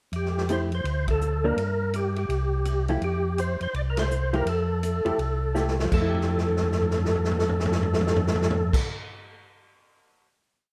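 A lightly overdriven, percussive tonewheel organ carries a motif-based melody through this short, swinging soul jazz organ trio piece, with a slow rotary speaker and chorus vibrato adding soulful colour. Beneath it, a mellow, round second organ holds a two-feel bass line, a dark, clean hollow-body jazz guitar adds syncopated comping in three- and four-note chord shapes, and a distant, roomy drum kit keeps a ride cymbal pattern over a punchy kick. Band accents land at 1.0 and 3.9 seconds, and after a drum fill the group settles on a final chord at 5.9 seconds, heard in a rough home-demo mix with moderate plate reverb.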